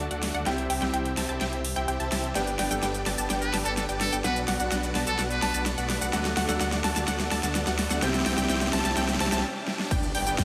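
A huge, detuned supersaw lead carries the riff in this euphoric, anthemic festival progressive house excerpt, its bright unison sound shaped by a low-pass filter, delay and sidechain pumping. Alongside it, a lush, punchy unison pluck plays high arpeggios through cassette-tape colouring, and a clear concert grand piano with audible action noise sits in the background as accompaniment; both also pump and echo. A thick, menacing detuned saw bass beats and saturates underneath, while the up-front big-room dance kit drives the build-up with a huge snare, metallic hats, cabasa and crash, and a very quiet riser and impact rise beneath it all. At 3.4 seconds a buzzy, thin trumpet with a metal mute slips in for a brief jazz-style solo with light vibrato and scooped notes. The chords move from C through G, Bm and D; after a drum fill, a break at 9.4 seconds gives way to a punchy, layered electronic kick landing on the impact at 9.9 seconds, all under a huge ambient reverb.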